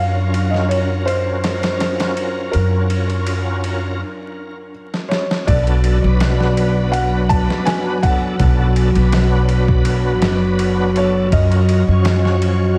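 A woody, thumpy upright bass sits up front in this brooding, smoky trip hop fragment, under a soft, felt-muted upright piano melody roughened by vintage sampler grit and tape echo. A bright, shouting tonewheel organ with key click, slow rotary speaker and tremolo accompanies alongside a deep, nasal analog pad holding sustained chords, while a very quiet flickering, granular texture hovers until 4.0 seconds. A pitched-down, overdriven sampler-style drum kit with a thumpy kick and ride cymbal breaks at 4.0 seconds and plays a fill into 5.5 seconds, where the harmony moves from Gbmaj7 to Bm7, all set in an echo-heavy mix with vinyl crackle and digital ambience.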